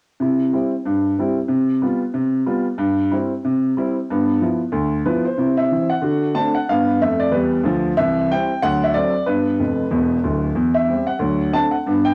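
A cassette recording with a moderate spring reverb frames a warm, boxy, up-front grand piano in this short fragment of exuberant, swinging stride jazz at 185 BPM in C major. The solo piano roams from deep bass notes to its upper register, moving from a first passage into a second at 5.4 seconds through dominant-seventh turns, and adds a fill from 9.6 to 10.6 seconds.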